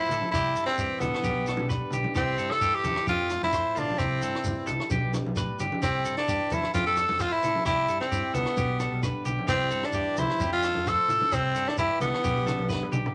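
Joyful and danceable, this highlife guitar band excerpt moves at 131 BPM in 4/4 with a light swing on the sixteenths, cycling through a bright C major progression that keeps returning to G/B and F. Up front, a raspy tenor saxophone carries the melody with a gritty, edgy tone, vibrato and scooped notes, sounding close-miked and soloistic in a pop style. Beneath it, a twangy, slightly broken-up electric guitar spins compressed arpeggios between F4 and C5, while a picked parlour steel-string acoustic guitar with fresh strings sits in the background. A round, fingered electric bass anchors the low end, and ringing, medium-tuned congas struck with hard hands add a vintage, band-limited colour. A compact cocktail drum kit with a high-tuned snare and punchy kick stays dry and in the background alongside a grainy, mellow shekere, and the whole band sits in a wet club reverb until a short drum fill arrives at 12.7 seconds.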